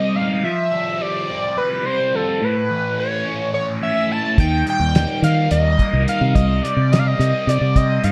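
A shimmering, warbling pulse-width lead carries the melody with chorus and slapback echo over a double-tracked fuzz guitar riff, its distorted, picked tone colored by phaser, in this kaleidoscopic, hazy psychedelic rock excerpt in 7/8. At 4.4 seconds a round, fingered electric bass and a cloth-damped, thuddy drum kit with a fat snare, tight kick and rolled-off top join in as the chords move from Fsus2 and A to Eb and Cm. A light reverb surrounds the mix.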